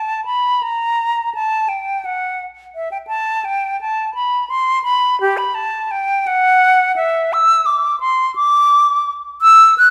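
Classical music in a baroque-style fantasia for unaccompanied flute, this short passage cut from a longer piece feels serene and radiant, moving in a flexible rubato over a 6/8 metre. A single concert flute carries everything from 0.0 to 9.9 seconds, ranging from G4 up to F#6. Its tone is airy and bright, with soft attacks and an expressive vibrato. Close-miked and placed up front, the flute sits in a moderate recital hall reverb that lends a gentle sense of space. A faint mains hum lingers beneath the playing.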